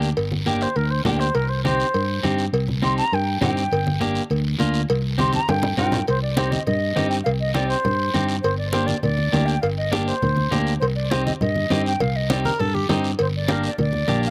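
A straight, briskly driving cumbia groove in four opens this passionate, fiery Latin excerpt, with a raspy guiro, ringing cowbell and timbales, and bright, low-tuned congas set back in the mix, all close and dry. Underneath, a fingered electric bass sits up front with a dark, round, punchy tone, while an electric guitar at the edge of break-up plays picked, compressed accompaniment with a slightly broken-up edge and slapback echo. A silver concert flute carries the melody from the outset, its airy, straight tone and crisp attack sounding distant yet up front, and it takes a solo through the opening section before a drum fill at 5.2 seconds leads into the next part. The harmony moves between G minor and C minor throughout. Near the end, at 12.5 seconds, a tenor saxophone adds a brief second line with a clear, pop-style tone and light vibrato, while the cowbell and timbales, flute and saxophone all carry a slapback echo in an open-air setting with little reverb.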